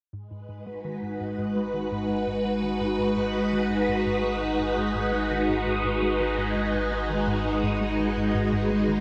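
A straight 4/4 pulse at 84 BPM anchors this hypnotic, mysterious ambient passage in G# minor, cut from a longer piece and resting on a single G#m7 chord. Up front, a swirling, vintage string machine holds bright sustained chords colored by ensemble chorus and phaser. Beneath it, a hollow, detuned square-wave pluck riff with chorus and delay sits in the background, while a deep, round sub bass holds G#1; both fade in across the full 9.0 seconds, all set in a vast cathedral reverb with a 6.2-second decay.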